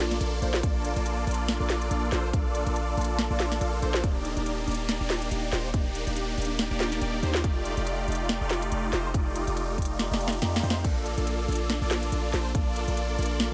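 Future bass with a bright, euphoric half-time feel and a light swing, built on huge, lush supersaw chords that are detuned and phased, pumping with sidechain and trailed by digital delay, over a deep, boomy 808-style bass that also pumps, while a trap kit with a sharp snare and crisp hats is joined at 0.6 seconds by a punchy, layered electronic kick, a drum fill at 10.0 seconds leads the Bbmaj7, Ebmaj7 and F13 progression back to Bbmaj7 in this short cut from a longer track, all in a lightly reverberant space.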